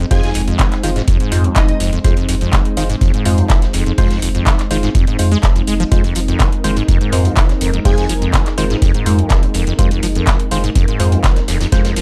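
The squelchy, resonant saw acid bass drives this trippy, dark acid house excerpt at 124 BPM in F minor, its riff run through analog chorus and dub echo and pumping against an up-front, deep electronic kick, a round sine sub bass and a detuned, evolving analog pad holding an Fm chord. A booming analog drum machine with metallic hats and handclaps carries the groove, while a muffled, cloth-damped acoustic kit with a fat snare sits very quietly underneath. Hollow, wave-folded organ stabs with phaser and cassette-tape colour recur throughout, and a soft, airy lead drifts in the background between 0.1 and 1.8 seconds and again briefly at 7.9 seconds.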